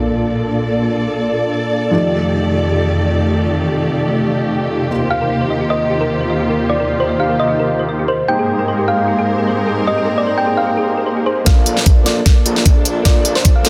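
Opening on a soft, felt-muted upright piano with audible action noise under dark, up-front bowed strings and huge detuned supersaw chords, all pumping to the sidechain, this playful, lush future bass excerpt in Bb major at 151 BPM with a half-time feel adds round, tine-like FM plucks carrying the melody and background arpeggios from 5.1 seconds, then, as the piano returns, builds from 11.5 seconds with a thick saturated detuned saw bass, a knocking up-front electronic kick and a pop kit fill of fat snare and crisp hats, all in a moderate hall and a dense, heavily limited master.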